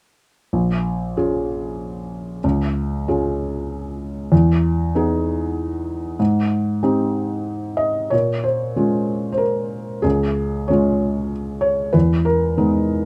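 In a rubato 3/4 lilt, this tender, intimate fragment of neoclassical minimalist piano features a lone felt-muted upright tuned to A4 = 445 Hz, playing from 0.5 s to 13.1 s between Bb1 and Eb5, its mellow, vintage tone sitting up front with audible action noise in a light reverb as it moves through Bbm7, Db, Emaj7 and Abmaj7 before a second passage from 8.1 s returns to Bbm7.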